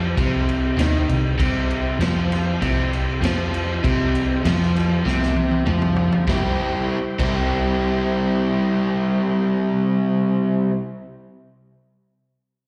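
Raunchy and driving, this short excerpt of blues rock power trio and southern rock moves at 98 BPM in 4/4 on a C major chord, its bright, double-tracked overdriven electric guitar riff up front with slapback echo while a round, foam-muted picked bass and a gritty overdriven tonewheel organ, sustaining chords through a slow rotary speaker in the background, fill out the sound. A vintage drum kit with dark cymbals and a punchy kick runs from 0.2 to 7.4 seconds, its fill at 5.1 seconds leading into a new section at 6.3 seconds. The whole performance carries the feel of a live gig heard through a venue's PA, with recital hall reverb around it.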